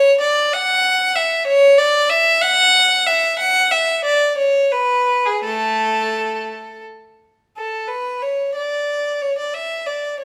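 In a flexible, rubato 3/4 that drifts between 83 and 97 BPM, this baroque-style suite movement for unaccompanied violin unfolds in A major with a radiant, flowing mood. A single bowed violin, placed up front, plays alone throughout the 10.2 seconds, its clear, smooth tone and even vibrato ranging from A3 to F#5. A wet stone-room reverb with a 1.1-second decay surrounds the violin in this short passage cut from a longer piece, and the opening idea returns at 7.6 seconds.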